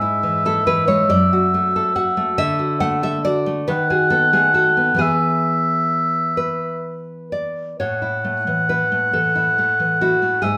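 An oboe and a nylon-string guitar begin together, setting a lyrical, romantic mood in a lilting 6/8 that stretches and relaxes with rubato. The oboe carries the melody in a classical style, its warm, singing tone sitting up front and staying within a narrow, high span. Beneath it, the fingerpicked guitar supplies a full-bodied, deep accompaniment that ranges from low bass notes up into the oboe's register, also placed close to the listener. The harmony moves gently through a chain of chords before settling onto its home chord around 7.8 seconds. The duo plays live in one large studio, and a generous reverb wraps both instruments in a soft, spacious glow across this 10.6-second excerpt from a longer piece.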